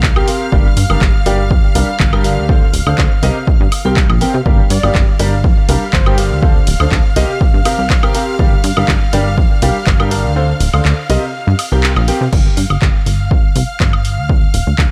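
Piano house at 122 BPM in G minor, bittersweet and energetic, with a punchy electronic kick up front and a tape-warm house kit of hi-hat, handclaps, ride, crash and woodblock driving a lightly swung groove, while a funky, plucky analog bass pumps underneath. A clear grand piano riff with analog chorus and delay cycles through Gm7, Dm7 and C7sus4, backed by a distant, lush violin section holding sustained chords, and an airy, dreamy lead drifts in the background from 4.7 to 8.4 seconds. The kick drops out at 10.4 seconds, and the piano stops at 12.2 seconds as this excerpt moves to a new section over G5 and Dm.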